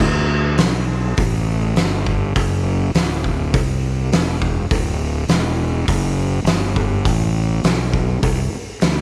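A fuzz-soaked fingered electric bass and an oversized, low-tuned drum kit start together at 0.0 seconds, setting up a driving, gritty groove in the vein of a blues rock power trio with a southern rock lean. The tempo sits at 102 BPM in a straight 4/4, and the music stays in D mixolydian. The bass stays low, between D1 and D2, its overdriven, growly tone coming through bright, direct and amped, sitting up front in the mix. The drums sound acoustic and saturated, with a fat snare, a punchy kick and hi-hat ringing in a bright stone room that seems to pump along with the beat. A light, small-room reverb adds a little air to this brief section cut from a longer piece, which runs to 9.0 seconds.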